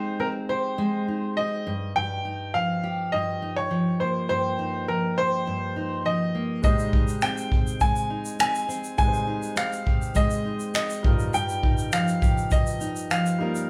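A straight 4/4 groove at 102 BPM carries this carefree, easy-going acoustic pop fragment in Ab major, cut from a longer piece. A bright upright piano sings the melody from the opening, its brilliant, woody tone up front with audible action noise. Beside it, a picked steel-string acoustic guitar gives full-bodied jumbo accompaniment, with finger squeak close in the mix. At 6.6 seconds a vintage brush drum kit joins with finger snaps, a punchy kick and shaker, natural and rolled-off on top. A clear concert grand piano enters at the same moment to add polished, long-sustaining support with deep bass from the background. The harmony moves between Abmaj7 and Ebadd9/G, and the band plays live together in a large studio with a moderate reverb.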